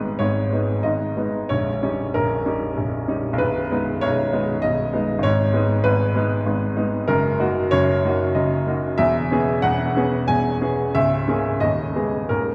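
A bright baby grand piano carries this romantic character piece alone, its brilliant, natural tone sitting up front with a short sustain on each note. Set in G# minor and 3/4 time, the music moves with a flexible rubato between roughly 82 and 100 BPM, giving it a bittersweet, passionate mood. The piano spans a broad register, from A#0 in the depths up to G#5. The harmony opens on G#m and passes through D#7/A#, D#m/F# and E6 before an A#m7b5/C# leads to G#m/D# near 11.6 seconds. A wet church reverb with a long 3.1-second tail surrounds the instrument, lending the cut-down fragment from a longer piece a spacious, resonant setting.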